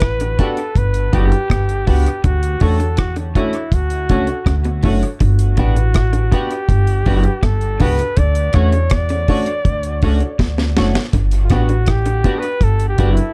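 Uplifting and laid-back, this dark roots reggae piece sets a punchy flugelhorn with vibrato, scooped notes and dub echo over a thumpy, woody upright bass and a dry, up-front deep reggae drum kit, while a worn, slightly detuned upright piano plays stabs, a clean semi-hollow electric guitar with subtle chorus and dub echo accompanies, and a lo-fi, slightly broken-up electric guitar through a small old amp plays fingered arpeggios with tremolo in the background; a drum fill at 10.4 seconds then leads into a flugelhorn solo from 11.1 seconds.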